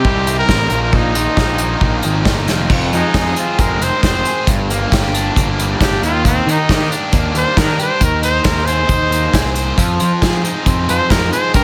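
A lightly reverberant studio room frames this bittersweet, moody indie rock excerpt, anchored by an acoustic drum kit up front, played with bundle sticks, with dark cymbals and a punchy kick driving a straight 4/4 feel. A double-tracked, overdriven electric guitar carries a bright riff over a fuzz-laden picked electric bass, while a present trumpet with vibrato and plate reverb sings the melody and takes a pop-style solo from 2.7 seconds. The harmony moves from Cm and Bbsus4 through Fm7, Gm, Ebmaj7 and Abadd9/Eb before settling back on Fm7.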